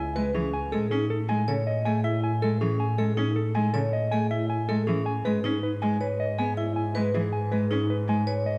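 A clean, fingered electric guitar carries the melody up front while a bright, ringing vibraphone struck with hard mallets spins arpeggios and a bowed double bass holds a smooth, even line beneath, with a focused, close solo cello joining at 0.2 seconds. This hypnotic, urgent minimalist pattern music in a straight 6/4 moves from C#m7 to Amaj7 and then to C#7(no3)/G# at 5.3 seconds, the vibraphone's fast motor vibrato shimmering against the vibrato of the cello and bass. A moderate scoring-stage reverb gives the dark production its depth in this short cut from a longer piece.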